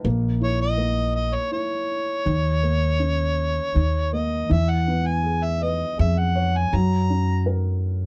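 A dark, warm production with light reverb frames this short cut from a longer acoustic folk-pop ballad, moving at 81 BPM in a straight 3/4 with a melancholic, intimate mood. A mellow, vintage upright piano with audible action noise and short sustain carries the accompaniment beside a thumpy, woody pizzicato upright bass on gut strings, both sounding from the opening until about 8 seconds. Up front, an amplified, overdriven harmonica enters at 0.4 seconds and takes the solo melody in a jazz style, gritty and full of vibrato, with tongue slaps and scooped notes over chords that move from A#dim through D#5 and E6 to F#.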